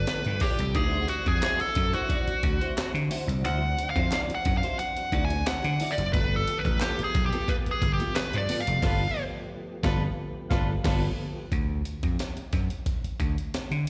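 Playful and energetic, this funk cut opens with an overdriven lead guitar, its parked wah giving a nasal bite, playing a solo over a growly, punchy slap bass and a gritty, compressed breakbeat kit with a thumpy kick. A twangy clean guitar accompanies, while a slow-rotary tonewheel organ with key click sits in the background over G9 and D9 chords. Hollow group handclaps join at 1.4 seconds, and a vintage horn section with light vibrato adds a band accent from 8.8 seconds. After the lead stops at 9.2 seconds, bass and drums carry on into a closing passage with a live, recital-hall ambience.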